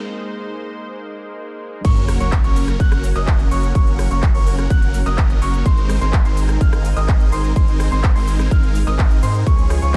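Uplifting and anthemic, this 126 BPM festival progressive house excerpt opens on a lush, chorused unison pad holding Abadd9 in the background before the drop lands at 1.8 seconds. The drop brings a punchy, overdriven kick up front, a crisp-hatted big-room kit with handclaps, rim clicks, shaker and crash, a deep saturated sine sub bass, huge phased supersaw chords with dub echo, clear concert grand piano arpeggios, and a very quiet sub drop that runs until 3.8 seconds. The pad, piano, supersaws and sub bass all pump to the sidechain through chords moving from Gb back to Abadd9 and on to Db.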